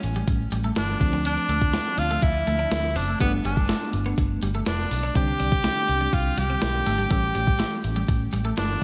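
Uplifting and nostalgic, this short cut from a longer 1980s-style pop piece moves at 123 BPM in a straight 4/4, with chords running from A7 through Dm7, Gadd9 and Csus2 before returning to A7. A clean 12-bit digital drum machine sits up front with a thumpy kick, a medium-tuned snare, hi-hat and tambourine, its sampler-style hits overdriven and re-recorded in a large room. Underneath, a vintage muted electric bass is picked with a dark, round, foam-muted tone, while an FM electric piano with tremolo adds mellow, decaying chords with a noise layer. A bright, twangy twelve-string electric guitar enters at 0.2 seconds with a compressed, picked riff in the background, touched by subtle chorus and delay. From 0.8 seconds an edgy tenor saxophone takes the lead up front, punchy and forceful with vibrato, slapback echo and delay, and a lush hall reverb gives the whole mix a big arena sound.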